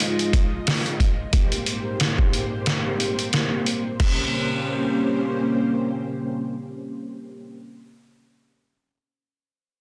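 A dark, cinematic trip hop excerpt in Bb dorian, moving at 90 BPM in 4/4 with a swung sixteenth-note feel. A string machine cello patch holds sustained chords from the start to 7.4 seconds, its sawtooth tone full and mellow with a sub octave, soft attack, ensemble chorus and vintage 12-bit sampler grit. Sampler-style drums play only until 4.1 seconds: a thumpy kick, medium-tuned snare, hi-hat and crash cymbal, compressed, pitched down and gritty, re-recorded in a large room and placed up front. The harmony shifts from Fm7 to Abmaj9 at 1.3 seconds, then settles on Bbm69 as the second section begins at 4.0 seconds, leaving the strings to carry on alone. Light reverb surrounds a dense, heavily limited modern master.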